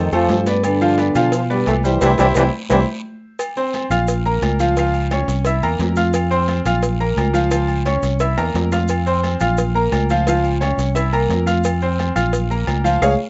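A punchy trombone section carries the melody for the first 2.8 seconds over a bright, worn grand piano and a growly, up-front fingered electric bass, opening a driving, danceable salsa at 174 BPM in 4/4 whose percussion of ringing agogo bells and timbales, a round low-tuned cowbell, distant high-tuned congas, grainy maracas and a raspy guiro continues through band accents and drum fills as the harmony cycles through F5, Bbm, Db and C7, in a rough home-demo mix with light reverb and a muffled top end.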